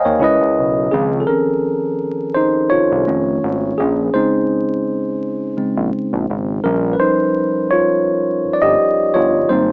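Over a lightly swung 84 BPM groove in 4/4, this smooth, late-night neo-soul R&B excerpt features a clean, up-front tine electric piano through a combo amp that takes a solo from 0.9 seconds, moving through Dbmaj9, F7alt, Bbm7 and Eb9/Bb above a fat, nasal, saturated analog bass with a sawtooth pluck, all set in light reverb with vinyl crackle and a small-speaker tone.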